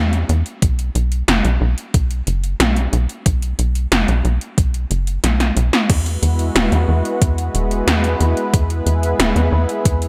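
Light digital reverb gives this synthwave excerpt a dreamy, romantic sheen, built on a dark, punchy sequencer bass with sawtooth bite and tube saturation, alongside up-front 80s electronic drums: a gated snare, metallic hi-hats and crash cymbal, overdriven and re-recorded in a small room. A thumpy, sampler-style electronic kick joins at 0.6 seconds. After a drum fill, a lush, detuned unison pad enters at 5.9 seconds, its warbling sustained chords shaped by chorus and sidechain pumping.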